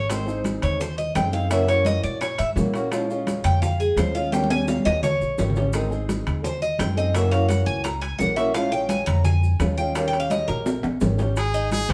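A bright, metallic Cuban tres solos up front over a woody pizzicato upright bass in this sunny, relaxed excerpt of Cuban son and guajira, joined by a boxy, fingerpicked ladder-braced acoustic guitar, background congas, round low-tuned bongos, grainy maracas and close, ringing timbales, with drum fills arriving at 4.3 and 10.5 seconds before a forceful, brilliant trumpet with vibrato cuts in at 11.4 seconds, all heard as a band playing live in one room with moderate reverb.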